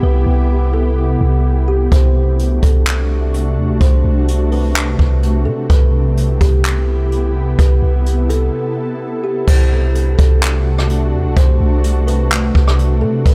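Atmospheric cloud-rap hip hop at 127 BPM in a half-time 4/4 feel, floating and blissful, cut from a longer piece that moves between Cmaj7 and D7/C. A woody, ringing kalimba carries the melody through a low-pass filter and delay over an ethereal, detuned pad of slow-attack chords with ensemble chorus, reverb and sidechain pumping, while a deep, sine-like 808-style bass sits up front. A jazz brush kit with a boomy kick, dark cymbals, handclaps and rim clicks enters at 1.9 seconds, sounding roomy and distant, and a break at 8.5 seconds leads into the closing section at 9.5 seconds.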